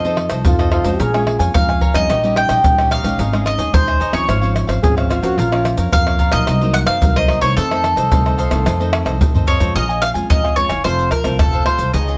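A nostalgic, bittersweet samba and choro excerpt in Bb minor at 110 BPM, where a bright, picked bowl-back mandolin with doubled strings carries the melody up front over a crisp cavaquinho, a full-bodied fingerpicked nylon-string guitar with audible finger squeak, and a woody, thumpy pizzicato upright bass. Close, dry egg shaker, pandeiro, tamborim and tight surdo played with soft hands sit up front, and a drum fill from 8.9 to 9.8 s leads into the second section. A breathy, whispered trombone with light vibrato and scooped notes adds brief intimate second lines around 0.5 and 4.8 s, all in light reverb.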